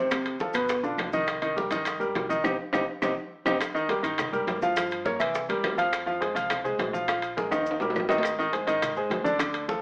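A brisk, danceable 207 BPM salsa groove in straight 4/4 and C minor drives this passionate excerpt, where a clear, up-front grand piano comps through chords like Dm7, G7 and Ebadd9 over a dark, thumpy pizzicato upright bass, ringing metal-shell timbales, woody claves, damped low-tuned congas, tight high-tuned bongos and grainy maracas, with drum fills at 2.4 and 7.5 seconds and a band accent at 2.4 seconds, all colored by moderate studio reverb and an AM radio sound.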